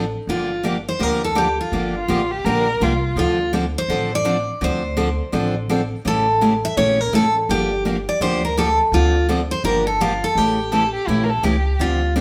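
Fiery and virtuosic, this swinging acoustic jazz manouche excerpt sets a bright, picked steel-string lead guitar, complete with finger squeaks, over a full-bodied jumbo acoustic guitar accompaniment and a woody, thumpy pizzicato upright bass on gut strings, while a bowed violin with vibrato and portamento adds a smooth, expressive second line at 2.0 s and again at 10.7 s, all played live in a moderate stone room.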